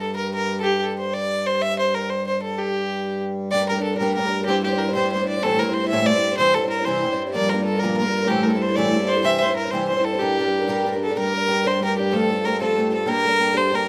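A single bowed fiddle opens this dark, spirited Celtic folk fragment, sitting up front with a rich, nasal, smooth tone and light vibrato. Beneath it, a hand-pumped harmonium holds a reedy, breathing drone in a low register. The lively 6/8 movement has a straight feel, and the fiddle's melody stays even throughout. At 3.5 seconds a picked twelve-string acoustic guitar joins as accompaniment, its woody, octave-doubled sound shimmering with the dark tint of old strings. The chords pass through Gm, Am, C and Bb before a brief second section arrives at 11.2 seconds, moving to F and settling on Gmadd9. A moderate studio reverb gives the trio a modest sense of room, and the passage is cut from a longer piece.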